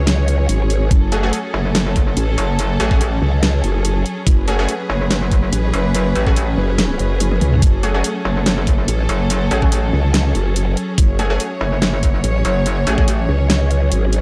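Set at 143 BPM in a swung, half-time 4/4 feel, this heavy, chaotic wobble dubstep excerpt in F# minor rests on an F#madd9 chord, with a saturated growl bass and a metallic, FM-toned wobble bass with distortion driving the low end up front. A knocking electronic kick and a dubstep kit bring a huge snare, bright hats and toms, while bold detuned sawtooth orchestra-hit-like stabs carry cassette tape and delay. A soft, bowed sul tasto string section pumps beneath, all kept dry and close, with a drum fill at 7.2 seconds.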